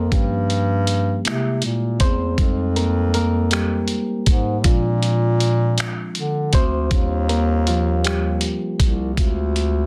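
Dense and heavily limited, the mix sits in a light reverb, with the drums and bass clarinet placed up front. This short cut from a longer piece is a slow, late-night R&B groove in six-eight with a straight, sultry feel. A dusty, sampler-style soul kit, compressed and gritty, plays finger snaps, hi-hat and a thumpy kick from 0.1 s, re-recorded in a large room, with soft clipping roughening the snare. Underneath, a mellow bass clarinet holds the low end in a classical style, its top smooth. The reedy electric piano carries the accompaniment and takes a solo across the whole passage, clean through its built-in speakers and bathed in plate reverb. The harmony drifts through Gm7b5, C7b13, Fm7, Bb9 and Ebmaj9 before reaching Dm7b5 at 9.2 s.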